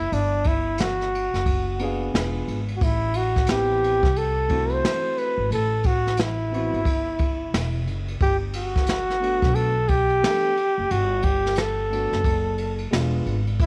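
Smooth and relaxed, this jazz-hop excerpt at 89 BPM in G major swings gently as a breathy, up-front flugelhorn with light vibrato and scooped notes carries the melody through a slapback echo, over a woody pizzicato upright bass and a brushed drum kit with a boomy kick, dusky cymbals and a rolled-off top, while a mellow, boxy concert grand piano joins at 1.8 seconds, all in a small, lightly reverberant room.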